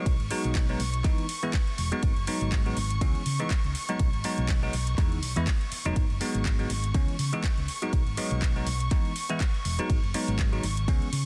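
Dense, heavily limited and set in a digital ambience, this nostalgic, groovy filtered disco house piece at 122 BPM in G# minor swings its 16ths over a punchy, up-front electronic kick, a house kit of handclaps plus metallic hi-hat and ride cymbal that pump with the sidechain, and a dark, round hollow-body fingered electric bass, while a bell-like tine electric piano with phaser and gritty 12-bit sampler colour and a floating, soft-attack chamber string section carry the B6, Emaj7, G#m7 and C#m7 chords, both breathing with sidechain pumping.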